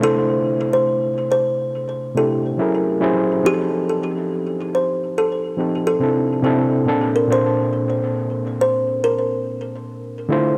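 Hip hop at a slow 70 BPM with a swung sixteenth-note feel, this dreamy, mellow fragment pairs an up-front kalimba melody, its thumb-plucked notes short, woody and hollow, with a gritty, reedy overdriven electric piano comping through a combo amp. Both parts carry tape echo, and a moderate plate reverb gives the whole piece a soft, echo-heavy haze, tuned slightly flat to A4 = 438 Hz. The harmony moves from C6/9 through F#9 and F7 back to C6, then shifts at 6.9 s to a lush Bbmaj9 before the fragment ends.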